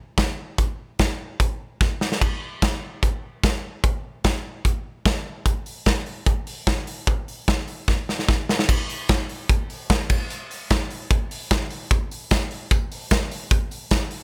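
Lightly reverberant and polished, this short indie pop cut from a longer piece has a youthful, breezy feel in a straight 4/4. A big acoustic rock drum kit sits up front in an airy studio room, with a punchy kick, a medium-tuned snare, hi-hat and crash cymbal. It breaks into fills at 1.8 and 7.9 seconds, the second one carrying the music into a new section. A very quiet, jingly tambourine slips in close at 11.9 seconds for the final stretch.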